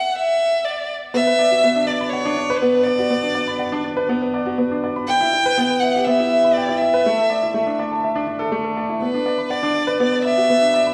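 A moderate echo chamber reverb lends this hypnotic, cinematic electronica excerpt a spacious studio sheen at 122 BPM in B minor. A close, expressive bowed violin carries the melody from the start, soft in attack with vibrato and portamento, playing alone through a brief break and build-up until a woody, polished upright piano riff arrives at the drop at 1.1 seconds. Both parts sit up front with digital delay, moving through Bm, Em and Asus4 before returning to Bm.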